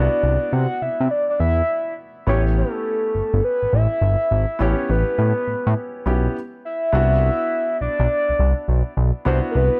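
New jack swing R&B with a bouncy, punchy mood, this short excerpt moves at 103 BPM in 4/4 with a 65% swing on the sixteenths. A fat, thick analog bass sits up front and carries the most weight, its nasal, detuned sawtooth and square-wave tone shaped by a filter pluck with a fast attack and sustained body. Above it, a soft, round synth lead layered with a sub octave carries the melody, its dark triangle-and-sine voice treated with chorus, phaser and vibrato. A clear, intimate grand piano plays accompaniment further back, natural in tone with audible action noise. The harmony moves from Cmaj9#11 to A9 at 2.3 seconds, and the band drops out in a stop from 6.3 to 6.9 seconds before a new section returns to Cmaj9#11. Studio ambience surrounds the parts, and the clip is cut from a longer piece.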